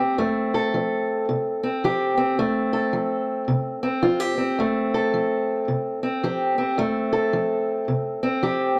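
This blues excerpt features a lone fingerpicked steel-string acoustic guitar, cut from a longer piece and lasting about 8.8 seconds. The mood is swaggering and soulful, moving at 109 BPM in 4/4 with a swung eighth-note feel in F major. The guitar carries the whole performance, resting on an F chord and reaching from F2 up to A4. Its parlour-style tone is dark and boxy, sitting up front in the mix. A moderate studio reverb gives the instrument a modest sense of room around it.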